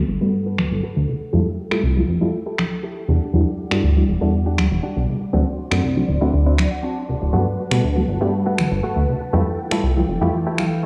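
Filtered disco house at 120 BPM in G major, this feel-good, funky excerpt from a longer piece runs a filter sweep across its whole length over a chord loop that moves from Gmaj9 through Fmaj9, Em9 and D7. A punchy, plucky analog bass sits up front, its fast attack and decaying filter pluck giving the low end a funky, evolving character. A lush string machine ensemble holds soft-attack sustained chords with phaser and ensemble chorus, while a reedy electric piano, also phased, adds accompaniment in the background. A bright, twangy clean electric guitar, recorded direct and compressed, plays a picked riff and adds short fills at 6.3 and 10.3 seconds. Tape-warm electronic finger snaps and a band-limited, vintage tambourine and conga layer fill out the groove, and a moderate hall reverb with a 1.6-second decay gives the mix a lush, digital ambience.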